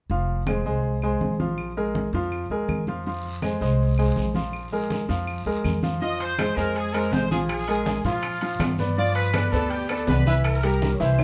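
A driving, danceable salsa groove at 162 BPM in straight 4/4 and F minor, cut from a longer piece, is set by low-tuned congas and a thumpy, gut-strung pizzicato upright bass under an intimate, up-front baby grand piano whose action noise is audible as it comps through Fm and Bb5, with woody claves joining in the background at 0.5 seconds. A raspy, saturated guiro joins at 3.1 seconds, and at 6.0 seconds a punchy trumpet section takes the melody, with ringing, compressed metal-shell timbales entering just after at 6.2 seconds, the harmony moving on through G7 to C7. The whole sits in a moderate large-studio reverb.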